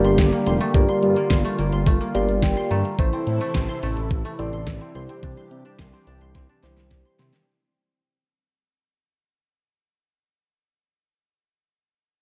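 Melancholic yet driving, this short synth-pop excerpt moves at 107 BPM in a straight 4/4, fading out across its whole length over a Gmadd9, Am and Cadd9 progression. An up-front electronic pop drum kit with a knocking kick and fat snare sets the pulse, and a smooth, detuned synth bass sits up front beside it. Muted, felt-like synth keys give soft, intimate accompaniment with a dark filter-swept edge and chorus, stepping out with a brief fill at 1.9 seconds. Underneath, a brassy, airy analog pad holds sustained chords with a soft attack, a moving notch and vibrato. A dry, woody koto picks arpeggios with slapback echo and rings on alone until 9.8 seconds, after the drums close with a fill at 6.4 seconds. Moderate plate reverb wraps the dark, warm production.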